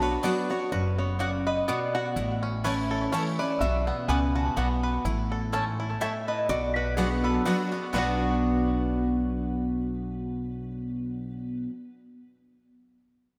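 Soaked in a dreamy plate reverb, this brief fragment of lonesome, driving bluegrass rolls along in a swung three-time lilt over a Bm-to-A chord shuttle. A slide-played lap resonator guitar, metallic and nasal through fingerpicks and tape echo, carries the melody, while a bright, full-bodied dreadnought picks its accompaniment up front under analog chorus and a twangy, percussive banjo spins arpeggios. A growly, thumpy upright bass sits forward in the mix, and from 0.2 s a woody mandolin adds picked stabs of double strings with their own tape echo.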